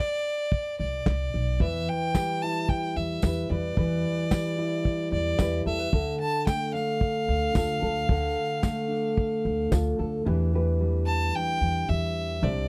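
Gentle and peaceful, this short acoustic folk passage for a small band moves at 111 BPM in a straight 4/4, cut from a longer piece. A clear, bowed fiddle carries the melody from the very start, smooth and even with light vibrato, sitting up front in the range of D5 to A5. Soft brushes on a dark, rolled-off drum kit join at 0.5 seconds, pairing a punchy kick with a medium-tuned snare, while a woody pizzicato upright bass settles low beneath them and a fingerpicked nylon-string guitar adds full-bodied, deep classical accompaniment. A jingly tambourine sits quietly in the background, and both it and the drums drop away at 9.8 seconds, leaving fiddle, bass and guitar to close on an Em7 chord. The harmony drifts from a rootless Amadd9 through Em and Dm, captured in a dry, close studio sound in a 1970s style with little reverb.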